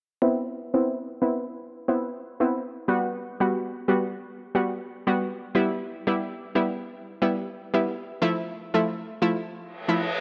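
Worn, warbling cassette tape with warbly pitch drift and a lush hall reverb gives this short dancehall excerpt a hazy, vintage cast, its mood bouncy and sultry at 90 BPM with a light sixteenth-note swing. An up-front analog pluck, round and sawtooth-bright with chorus and a low-pass filter sweep, carries the accompaniment from 0.2 seconds through a Cmaj7, Gmaj7, Em and Fmaj7 progression. An electronic reverse cymbal rises into the final moments at 9.8 seconds.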